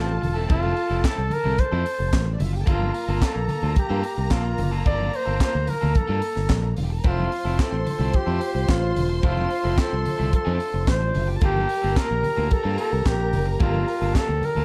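A breathy, up-front flugelhorn leads this glamorous, danceable disco excerpt at 110 BPM, its jazz-style melody scooped and lightly vibrato over a lush bowed violin section, a slightly broken-up picked electric guitar and a warm fretless bass, all moving from Gm9 to Fmaj7 and back. Damped, thick-skinned congas sit very quietly underneath, while a dry, tight funk kit with a high-tuned snare, hi-hat, kick and handclaps drives the straight 4/4 groove from the front. At 7.0 seconds a distant, roomy French horn section adds sustained chords in the background, all within a dark, warm production with light reverb.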